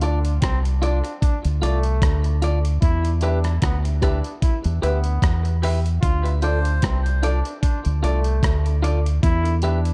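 A round, punchy fingered bass and a gritty, thumpy sampler-style kit of kick, hi-hat and rim click sit up front from the first second of this spacious, deep dub reggae excerpt at 75 BPM with swung 16ths in D dorian. Around them, a twangy, clean electric guitar and a bright, distant trombone with vibrato play through tape echo over Dm and Em. A muted, nasal chord stab with phaser slips into the background at 3.2 seconds, and a reedy, breathy melodica touches a single echoed note at 6.4 seconds, all within a dark, dry production.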